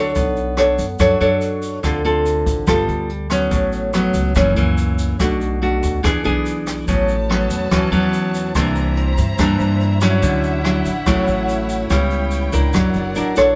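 Bossa nova with a sophisticated, sunny mood, where an up-front fingerpicked nylon-string guitar carries rich jazz chords over a woody, thumpy pizzicato upright bass, a boomy-kicked brush drum kit with hi-hat and rim click, and a grainy tube shaker tucked in the background, joined at 6.9 seconds by a lush bowed string section with soft-attack vibrato that enters to hold sustained chords, all sitting in a moderate, live-room reverb with a rolled-off top.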